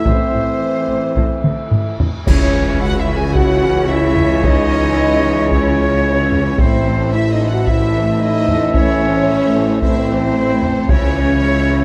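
A cinematic, epic orchestral film score cue, cut from a longer piece, with a dark, heroic mood in a straight 4/4. A rich, focused violin section carries the melody, joined in the same register by a distant silver concert flute with a pure, crisp attack playing a second line. Behind them a second violin line, an expressive viola section with portamento, and smooth cello and double bass sections fill out the strings, while the tuba joins the low end. Mellow French horns hold sustained chords over very quiet trombones, and a soft-attacked trumpet adds stabs. Taiko drums struck with heavy sticks drive the cue almost throughout, and a drum fill from 1.4 s leads into a band accent at 2.3 s, where bright clash cymbals and concert bass drum briefly ring out as the harmony shifts between Am and C#m under a moderate scoring stage reverb.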